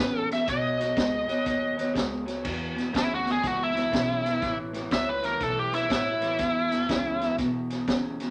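A swung 122 BPM shuffle in 4/4 drives this laid-back, rollicking electric blues fragment in E major. A vintage drum kit with a punchy kick, high-tuned snare and dark cymbals joins at 0.3 s, under a woody pizzicato upright bass and a slightly broken-up, lo-fi rhythm guitar riff through a small old amp, treated with spring reverb. Over chords moving from B through E5 and A to E7(no3), a bright, overdriven, biting lead guitar sits up front and breaks into a solo at 2.4 s before dropping out at 7.4 s, all set in a wet studio reverb.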